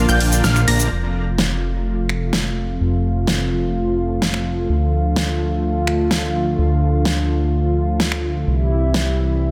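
Festival progressive house at 127 BPM in F major, this triumphant, euphoric fragment is cut from a longer piece and runs on a straight 4/4 pulse. It opens with a brief flash of a dense, compressed supersaw riff, thick and detuned with a sub octave and a low-pass filter, alongside a bright, punchy unison pluck playing high arpeggios coloured by cassette tape character, both trailing dub echo before dropping out at 0.9 s. Throughout, a lush, airy unison pad holds sustained chorused chords up front over a fat analog bass that rolls through sawtooth filter sweeps, while the chords move from Bb to F, then Dm, then C. A big-room electronic drum kit, layered and up front with a huge snare, drives the groove with hi-hat, shaker and finger snaps until 9.0 s. The mix sits in a moderate hall reverb with digital ambience, and the master is dense and heavily limited.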